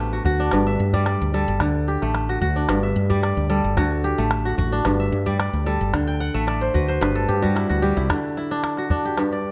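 West African traditional string music in D mixolydian moves at a joyful, flowing 111 BPM in straight 4/4, with a crisp, ringing, fingerpicked kora spinning arpeggios up front over an alternating D and G5 harmony. A dark, round, punchy fretless electric bass with a woody, hollow-body tone anchors the low end until 8.1 seconds, while a small calabash adds close, dry percussion. The kora plays a fill from 6.1 to 8.1 seconds and carries on to the close of this short cut from a longer piece, all captured with close, detailed microphones and light reverb.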